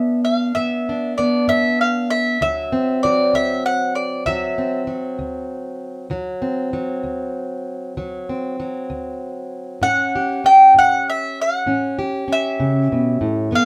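A round, up-front mandolin carries the melody with picked double strings in this short excerpt of laid-back, rollicking acoustic country blues, rolling along in 12/8 at 65 BPM in D mixolydian. Beneath it, a full-bodied, fingerpicked jumbo steel-string guitar, plugged in and sitting up front, supplies the accompaniment, moving from G#dim7 to D7 at 2.4 seconds and on to A7 at 9.8 seconds. The duo sounds like it is playing live together in one room, with a moderate studio reverb.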